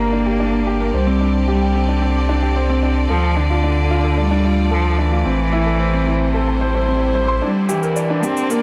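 A dark, warm production with light small-room reverb frames this short cut from a longer piano and strings electronica piece in D minor, moving at 111 BPM in a straight 4/4 with a hypnotic, moving mood. A vintage-toned baby grand piano sits up front playing a smooth riff, while a solo bowed cello carries the melody with a nasal, boxy vibrato. Behind them, a bright, intense string section holds sustained chords, and both the strings and the piano are bathed in shimmer reverb. A round, sine-like sub bass anchors the low end until 7.4 seconds, beneath a progression that moves through Gm, Csus2, Dm and Am before returning to Gm. An electronic swell and riser rises in the background from 6.7 seconds into a short build-up, where an overdriven electronic shaker enters at 7.7 seconds.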